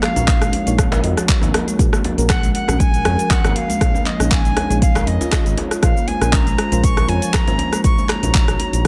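An echo-heavy mix with light reverb and a digital ambience frames this afro house excerpt, cut from a longer piece, at 119 BPM in 4/4 with a gentle swing on the 16ths. The mood is spiritual and driving. A deep electronic kick sits loudest, joined by an overdriven kit of cabasa, handclaps, hi-hat and rim click with a small-room character, while a soft-handed djembe with dub echo stays in the background. A smooth synth bass that blends sawtooth and triangle tones pumps against the kick, and a woody marimba played with soft mallets traces arpeggios, also pumping and carrying dub echo, until it stops at 7.8 seconds. Over a moody, very quiet analog pad and a dark, decaying chord stab coloured by chorus and phaser, a bright, reedy silver concert flute carries the melody with vibrato and dub echo. The harmony moves through Ebm7/Bb, Gbadd9/Bb, Absus4/Bb and Bbmadd9.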